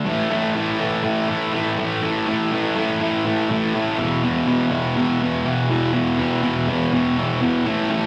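Rock at 122 BPM in a straight 4/4, angsty and brooding, this short cut from a longer live gig features a lone bright, double-tracked fuzz guitar, compressed and up front with distortion and tape echo, playing from 0.0 to 8.1 seconds between E2 and A3 over an A5 chord that moves to E5 at 4.0 seconds, all heard through the venue's PA with light club reverb.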